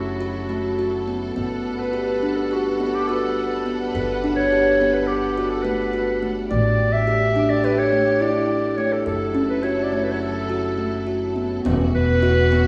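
Moving in an uneven 9/8 at 210 BPM in eighths with a straight feel, this hopeful, shimmering stretch of contemporary chamber music in G lydian sets a clear, up-front classical clarinet melody over ringing, woody kalimba arpeggios, lush bowed string chords with vibrato, and a thumpy pizzicato upright bass, moving through F#m7, Gmaj9 and A7sus4 in moderate hall reverb before a deep, distant frame drum sounds from 11.7 to 11.9 s as the harmony settles on Esus2.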